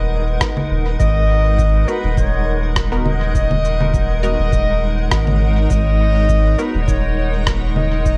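A mellow, distant clarinet sings a solo line through dub echo over a cloudy, evolving granular pad and a round, up-front sub bass, setting a deep, hazy ambient dub mood with a gentle swing. From 0.4 seconds an overdriven electronic kick sits in the background while a muffled, tape-warm blend of rim click, cabasa and congas, pitched down and sent through echo, fills out the groove. A very quiet, muted chord stab with a detuned sawtooth edge and chorus drifts in from 1.9 to 6.7 seconds, all held on a single minor ninth chord in a softly diffuse digital space.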